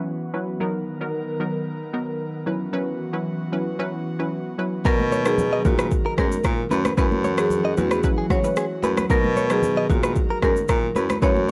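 A sunny, romantic afrobeats excerpt opens with a round, detuned analog pluck and an airy, breathy pad, both softened by chorus and a low-pass filter, trading between Bmaj7 and F#7sus4. At 4.9 seconds the groove arrives: an electronic afro-pop kit with a deep kick, rim click and shaker sits up front beside a smooth, vibrato-laden baritone saxophone carrying the bass line, while a woody hard-mallet marimba melody and a bright, clean, compressed electric guitar riff share an analog delay, and thick-skinned, high-tuned congas join from the background at 5.0 seconds. The whole piece has a dry, gritty hardware character with transformer saturation and a digital ambience.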